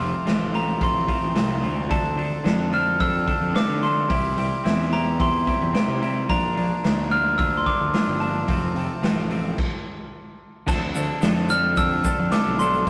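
A bell-like, ringing, close-miked glockenspiel played with soft plastic mallets carries the melody in this restless, bittersweet indie rock excerpt in D minor at 109 BPM. Beneath it, a twangy, bright twelve-string electric guitar and a very quiet, slightly broken-up guitar through a small old amp play riffs over a round, fuzz-overdriven picked bass. A gritty garage drum kit with a punchy kick enters at 0.3 s, and after a brief stop from 9.6 to 10.7 s a grainy tube shaker joins in the background, all in a rough rehearsal-room sound.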